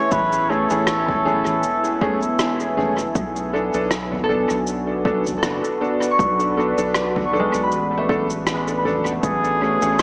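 A veiled cup-muted trumpet with dub echo floats over a deep, meditative ambient dub groove at 79 BPM in B dorian, where a dark detuned pad, round tube-saturated sub bass, punchy overdriven electronic kick, soft-mallet kit with cabasa, rim click and toms, clear woody upright piano stabs and a ringing harp entering at 4.2 seconds drift through Amaj7 and Bm7 in an echo-heavy mix with spring reverb and a small speaker sound.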